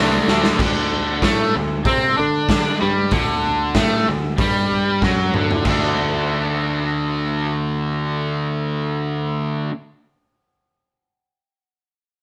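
A double-tracked, bright fuzz guitar drives a raw, rowdy garage rock riff in D mixolydian at 95 BPM, backed by a direct, picked electric bass and a gritty drum kit with a punchy kick that enters with a fill at 0.3 seconds and drops out at 5.8 seconds after another fill, all captured live in one room with light reverb in this short cut from a longer piece.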